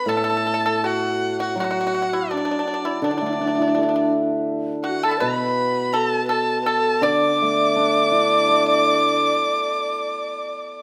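A clear, focused erhu, bowed up front with vibrato and portamento, carries the melody from the opening moment alongside a breathy, crisp-edged bamboo xiao on a second line, soon joined by a mellow, dry, fingerpicked pipa and a bright, shimmering hammered dulcimer accompaniment that stops at 10.0 s, in this pastoral, festive Chinese traditional passage in D gong mode at 82 BPM with a rubato feel, set in a reverberant recital hall.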